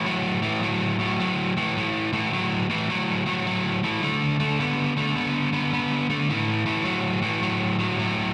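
Blues in 4/4 at 106 BPM with a swung eighth-note feel, this gritty, soulful fragment from a longer piece features a lone, biting overdriven electric guitar, picked and up front in the low-to-middle register, with slapback echo and analog delay over chords moving from A5 to D5 at 4.0 seconds and back to A5, heard as a live gig through the venue's PA with moderate club reverb and a recital-hall ambience.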